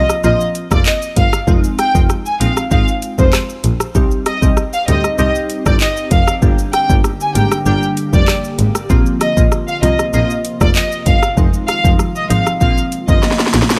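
A dry cut from a longer dancehall track at 97 BPM, tough and hypnotic, with an electronic afro-pop kit up front, its deep kick, sharp snare, metallic hats, handclaps, rim clicks and shaker driving a straight 4/4 beneath a bowed double bass that is rich and intense with light vibrato. A smooth, even studio violin section carries the melody up front with vibrato, while a crystalline, detuned wavetable pluck plays accompaniment through chorus, phaser and sidechain pumping. At 4.7 seconds an ethereal FM pad slips in behind them with slow, sustained, mellow chords, and a drum fill closes things at 13.2 seconds over a loop of Bbsus2, Fm7, Cm and Gm.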